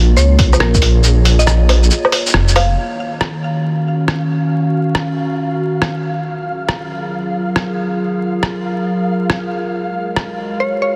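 Future garage in Eb minor at 138 BPM with a swung 16th feel, this rainy, ghostly excerpt rests on a warbling, nostalgic tape-like pad with chorus and pumping sidechain that sustains Bbm7, Ebm9, Gbmaj9 and Abm9 chords, while a menacing, detuned saw bass swells up front until 2.8 s. A woody, round mallet-like pluck carries the melody with chorus and delay, a muffled, pitched-down sampler-style kit of hi-hat, rim click, shaker and woodblock plays through most of the piece, and a punchy, overdriven electronic kick hits briefly near the start. From 3.6 s a faint, grainy, flickering texture drifts in, all set in a dense, heavily limited mix with vinyl crackle and a faint mains hum.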